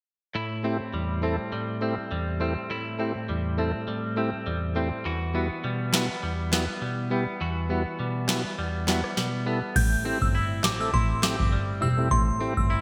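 Riding a bouncy, lightly swung 102 BPM dancehall groove in 4/4, this hypnotic excerpt opens on a smooth tonewheel organ with chorus vibrato and a twangy, picked clean electric guitar arpeggiating through Am7 and Emadd9, before a booming analog drum machine with a deep kick, crisp snare, rim clicks, handclaps, crash cymbal and gated reverb enters at 5.9 seconds, joined at 9.8 seconds by a glassy FM synth bell melody and a dark, bowed double bass, all set in moderate plate reverb with bright 1980s-style digital production.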